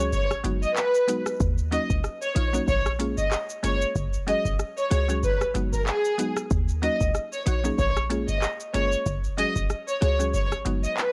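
A bouncy dancehall groove at 94 BPM in 4/4 rides a light swing on the sixteenths, driven by a booming analog drum machine that sits up front and dry, with a deep kick, metallic hi-hats, handclaps, rim clicks and shaker. Beneath it, a short 808-style bass punches in tight, sine-based hits with a noise layer and a fast, decaying attack, moving between F1 and Eb2. A woody, round FM synth pluck with a mallet-like character and chorus supplies mellow, percussive accompaniment in the middle register. Over the top, a lush symphonic violin section carries the melody between Ab4 and Eb5, bowed with expressive vibrato and colored by analog delay. The harmony cycles hypnotically through Abm7, Ebm7, Bbm7 and Gbsus2 in Eb minor, returning to Abm7 near 10.3 seconds. The sound is gritty, with little reverb and a cassette-tape hardware character, and this 11-second passage is cut from a longer piece.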